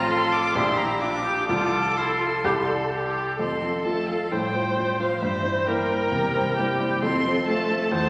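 A cheerful, graceful classical-period movement for piano quartet opens with violin, viola, cello and grand piano sounding together from the first moment. The piece moves quickly at 130 BPM in 4/4 and F major, though the beat is uneven and stretched with rubato, and the tuning sits slightly high at A4 = 441 Hz. The solo violin carries the melody in a clear, smooth and even tone with vibrato. An intense, up-front viola and a polished grand piano with short sustain share the accompaniment. Meanwhile, a single cello sings a second line from the background, expressive and warm, with vibrato and portamento. The harmony settles onto F around 3.4 seconds as a new section begins, and the whole is bathed in the wet reverb of a scoring stage in this short cut from a longer piece.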